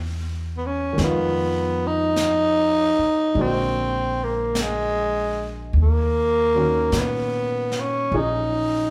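A growling tenor saxophone carries the melody up front, its breathy subtone turning raspy and gritty as it scoops into notes, entering at 0.6 seconds. This is a melancholic, wistful jazz ballad at a slow 50 BPM in 4/4, with a swing feel on the eighth notes. A baby grand piano with a natural, short-sustained tone plays the accompaniment beneath it, moving through G#m9, Fm7b5, A#7b13 and D#m7. A pizzicato upright bass gives the low end a woody, thumpy character, and a brushed jazz kit joins at 1.0 seconds, its snare and hi-hat kept far in the background. The band plays live in one large studio room, and a moderate reverb lends the brief fragment a shared sense of space.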